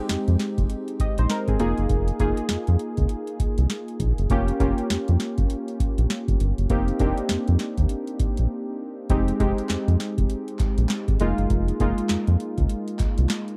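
A dry, close recording with a 1970s studio character frames this punchy, bouncy new jack swing in F minor at 100 BPM, swung on the sixteenths. A booming, tape-warm analog drum machine with a deep kick, crisp snare and metallic hats sits up front alongside detuned, chorused sawtooth keys with a filter sweep, while a round, dark sine-and-sawtooth bass sits beneath chords moving from Fm9 through Db69/F, Bbm6/F and Cm7/F. After a brief break at 8.5 seconds, a hollow, distant group handclap enters at 9.7 seconds, sounding as if captured in a large room.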